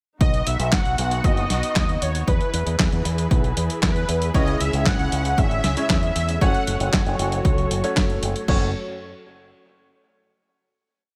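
A dry four-on-the-floor kick and crash from a punchy analog drum machine drive this nostalgic, danceable italo disco piece at 116 BPM in straight 4/4, joined by a gritty, compressed sampler-style kit of closed hi-hat, snare and handclaps, an up-front fingered electric bass with an envelope filter playing driving eighth notes, and veiled, con sordino chamber strings holding soft-attack sustained chords through a B, E, C#m, F#m progression in F# dorian, while a thick, detuned sawtooth unison lead with ensemble chorus and digital delay carries the hook phrases until 6.9 s, a brilliant baby grand piano adds delayed held chords with syncopated pushes from 4.3 s, and light reverb surrounds the short chorus before a final chord at 8.5 s.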